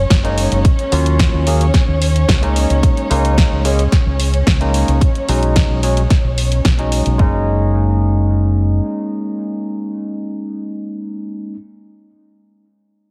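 Nu-disco at 110 BPM in F# major with a sunny, feel-good mood, where a punchy, up-front electronic kick and a house kit with snare and bright hi-hats drive a round, dark fingered electric bass beneath lush, woody bowed strings that pump with sidechain and a barky, lightly overdriven tine electric piano touched by subtle chorus and tape echo, the mix heavily compressed into a radio-like sound with light reverb, until the drums and strings drop out around 7.2 s, the bass stops at 8.8 s, and the electric piano carries on alone to 11.6 s.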